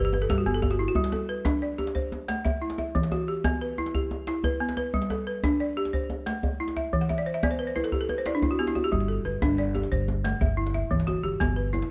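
West African traditional music with a hypnotic, warm feel at 120 BPM in a straight 12/8, this fragment of a longer piece centers on a woody, buzzing balafon struck with hard rubber mallets, playing arpeggios and fills over Em, G and Am chords, backed by a deep, hard-handed djembe throughout and a thumpy, gut-strung pizzicato upright bass that sounds briefly at the start and returns at 8.9 seconds, all three set up front in a dark production with light reverb.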